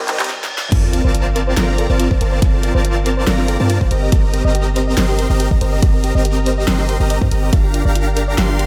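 This bittersweet, dreamy future bass clip opens on a brief build, where a felt-muted upright piano, a huge detuned supersaw riff, a pluck, a drum fill and a riser with reverse cymbal gather before a short stop. At 0.7 seconds the drop lands in half-time with a sub impact: a punchy electronic kick and a deep, boomy 808-style bass sit up front, while a pop kit adds a fat snare, handclaps, hi-hat and crash. Throughout, the thick, compressed supersaw pumps with sidechain and delay over a soft, round pluck playing chorused arpeggios in the background, all set in light digital reverb.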